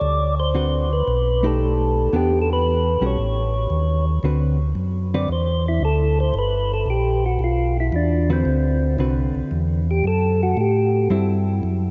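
Two up-front tonewheel organs open this swinging, soulful soul jazz organ trio excerpt at 114 BPM in D mixolydian: one plays the melody with a round, percussive third-harmonic attack, while the other carries the bass line with audible key click, both turning through a slow rotary speaker. A dark, compressed hollow-body guitar enters at 0.5 s with fingered accompaniment over changes such as D6, Em7 and D13, and the organ takes a solo from 4.2 s. The whole trio sits in a vast cathedral-like reverb with a long echoing tail and muted highs.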